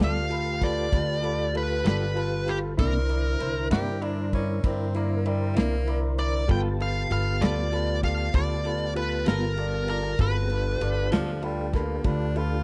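Gritty and laid-back, this slow 12/8 blues excerpt puts a dark, smooth overdriven lead guitar up front over a woody upright bass and a soul drum kit with a tight kick and dark cymbals. A bright upright piano accompanies alongside a clean electric guitar with harmonic tremolo and a tonewheel organ with slow rotary speaker and key click, the latter two sitting in the background, all moving between G9 and C9. At 3.7 seconds an edgy, forceful tenor saxophone enters with punchy, scooped notes, all captured in a dry, close 1970s-style studio sound.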